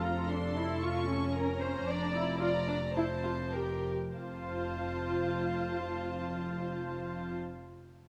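Graceful and cheerful, this brief fragment of a quick classical-period movement in 2/4 features a violin section carrying a high, intimate melody above a second violin line that sounds pure and floating. An up-front viola section fills the middle, while cellos and a dark double bass section anchor a low F beneath, all of the strings bowed sul tasto. The music slows down from 1.3 to 4.2 seconds, and a moderate concert hall reverb lends the ensemble a gentle sense of space.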